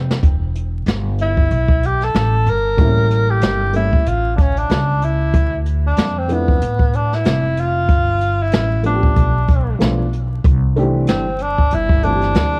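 A brushed drum fill and a woody pizzicato upright bass open this cool jazz-hop piece at 94 BPM in C major, the kit carrying a boomy kick and cassette-tape grit over a swung 4/4 groove. A breathy tenor saxophone enters at 1.2 seconds with subtone, vibrato and scooped notes through an analog delay, joined at 2.8 seconds by a dark, slightly detuned upright piano with audible action noise, as the chords move from Em through A7b9, Dmadd9 and G9. At 10.4 seconds the harmony settles on C69 as the saxophone takes a solo, the track framed by small room ambience and vinyl crackle from a home cassette recording.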